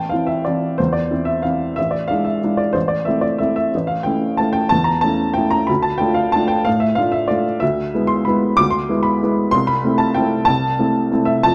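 Classical piano waltz in 3/4 with a bittersweet, wistful mood, played solo on a woody, intimate upright piano whose audible action noise and short sustain sit up front in a moderate studio reverb within a dark production, its rubato and uneven beats pulling the chords from Am through A7 and Dm before settling on Am/C in this short fragment of a longer piece.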